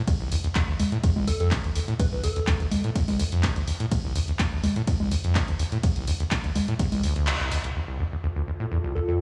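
A squelchy, resonant sawtooth acid bass opens this raw, trippy acid house excerpt at 125 BPM in straight 4/4, riffing between C2 and A2 with overdrive, cassette tape grit, sidechain pumping and tape echo, and a filter sweep running through its decaying notes. A punchy electronic kick, re-recorded in a large room, joins almost at once alongside an up-front analog drum machine of congas, handclaps, hi-hat and ride cymbal heard in a small room. A catchy, detuned square-wave unison lead with a noise layer and moving notch appears briefly at 1.3 s, dark and sustained under tape echo, then returns for a fleeting moment at the very end. The kick drops out around a band accent at 7.3 s, and after the harmony arrives on D minor at 7.8 s, a cloudy, blurred granular pad rises slowly at 8.3 s with its own reverb and pumping. The overall sound is a dry, gritty hardware recording with light reverb and small room ambience.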